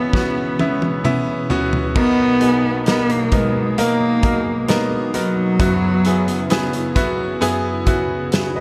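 Hopeful and tender, this slow pop ballad in B major moves at 66 BPM in a straight 4/4, cut from a longer piece. A bowed cello, played by one player with vibrato and portamento, carries the melody in a low, expressive voice until 6.9 s, while a bright, polished grand piano with short sustain accompanies it up front; both parts carry a dub echo. Underneath, a shimmering, retro pulse-width pad with a slow attack and chorus holds sustained chords in the background, and a full-bodied fingerpicked steel-string acoustic guitar adds very quiet arpeggios. A loose indie drum kit with dark cymbals, a punchy kick and a medium-tuned snare opens with a fill that runs to 2.0 s, its pumping room sound sitting up front alongside crash, hi-hat and toms. The harmony moves from C#m7 to Bmaj7 at 2.0 s and then to F#7sus4, all set in light reverb and small room ambience within an echo-heavy mix.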